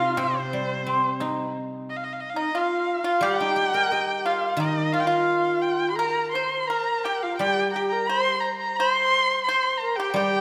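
Played rubato around 88 BPM in 4/4, this wistful, tender Chinese chamber piece in C yu mode is cut from a longer work. A single up-front erhu carries the melody with rich, expressive bowing, vibrato and portamento, while a breathy, reedy low xiao with tongued notes and a dry, percussive fingerpicked pipa share the second line. A ringing, silvery guzheng accompanies, and the whole ensemble sits in the lush wash of a scoring stage.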